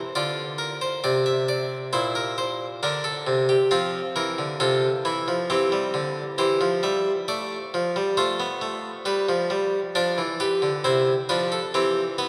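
A nasal, bright Italian-style harpsichord sits up front as the sole voice in this baroque-style three-part fugue in F major, moving at a steady 67 BPM in 4/4 with a feel that is both driving and contemplative. Its plucked tone spans Bb2 to E5 over a progression that runs from Bb/D through C7/Bb, F and G7 before settling on C at 10.8 seconds. A wet church reverb with a long tail surrounds the thin, mid-forward instrument across this 12.3-second excerpt from a longer piece.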